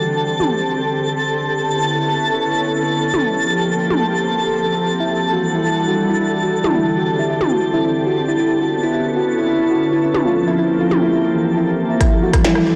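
Opening on a glassy, warbling FM pad in sustained chords in E minor beside a twinkling granular shimmer, this cerebral, intricate IDM excerpt at 137 BPM adds filtered, glitchy bursts of clicky hats, rim, tiny snare and toms, brings in a harp-like pluck with chorus and digital delay for arpeggios at 5.0 s, and lands a deep, up-front electronic kick at 12.0 s, all steeped in a huge ambient reverb and a blown-out, overdriven sound.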